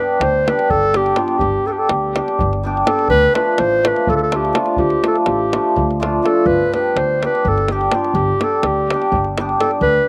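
Outdoor and nearly reverb-free, this festive, virtuosic Balkan wedding-band passage in 7/8, cut from a longer piece, puts a mellow, classical-style solo clarinet up front beside a shimmering, hammered cimbalom with slapback echo, underpinned by a woody pizzicato upright bass and a tight, close davul that also carries slapback echo, as the harmony moves from G to Dm and back to G over about 10 seconds.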